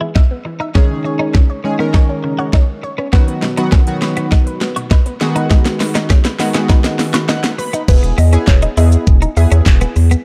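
Dance-pop at 101 BPM with a euphoric, carefree mood, this short cut opens with bright chorused analog pluck arpeggios, a clean, compressed twelve-string electric guitar riff and up-front knocking pop drums with fat snare, crisp hats, handclaps and shaker building over glossy, airy retro synth keys that pump with the sidechain, before a drop at 7.9 s brings in a deep, round analog bass and a woody, mallet-like synth pluck melody echoing in the background, all set in a dark digital ambience.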